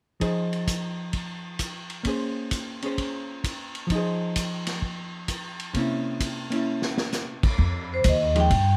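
Close, dry and detailed, this late-night, smoky excerpt of small-group swing and bop in F minor at 130 BPM opens with dark, clean hollow-body guitar comping over a vintage kit with a high-tuned snare and dark cymbals, a drum fill at 6.7 seconds leading to a woody, thumpy upright bass at 7.6 seconds and a ringing vibraphone melody at 7.9 seconds over an F7sus2 chord.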